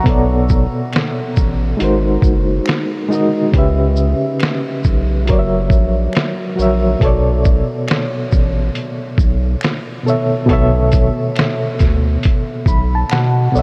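A 69 BPM groove in 4/4, swung on the sixteenths, carries this reflective, nostalgic lo-fi hip hop excerpt in B minor, where a reedy, up-front electric piano with fast tremolo, cassette tape colour and a low-pass filter moves through Bm7, G#7, C#m7b5 and F#7 and plays a fill from 12.2 seconds, over a deep, saturated sine sub bass, a compressed, pitched-down, muffled sampler-style drum kit with thumpy kick, medium-tuned snare, hi-hat and shaker, and a close, dry finger snap tucked in the background, inside a dreamy mix soaked in huge ambient reverb and cassette haze.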